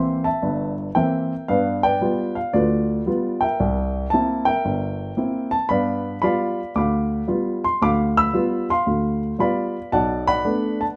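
Relaxed and playful, this short solo jazz fragment swings at 114 BPM in G mixolydian, with a dark, mellow baby grand piano sitting up front and intimate, its short sustain and audible action noise giving a natural, close feel as it moves through C7 and G7 changes before landing on Bm7 near 9.9 seconds, all inside a moderate club reverb.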